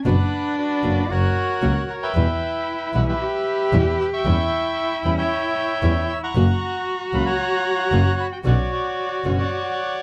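A reedy, vintage bandoneon carries the melody up front in this dramatic, tense tango cut from a longer piece, its band-limited tone ranging from F#4 up to E6. The feel is rubato around 114 BPM in 4/4, in B harmonic minor, with the harmony moving from Bm/F# through F#, Em and C#dim/E back to F# before settling on Bmadd9. A single bowed cello sings a second line beneath it, expressive and boxy, with vibrato and portamento. A close, biting double bass, also bowed by one player, sits prominently in the low register with an earthy, airy bow and light vibrato, and it drops out at 9.5 seconds. A small, fingerpicked nylon-string guitar supplies the accompaniment until 9.4 seconds. The production is dark and warm, set in light reverb.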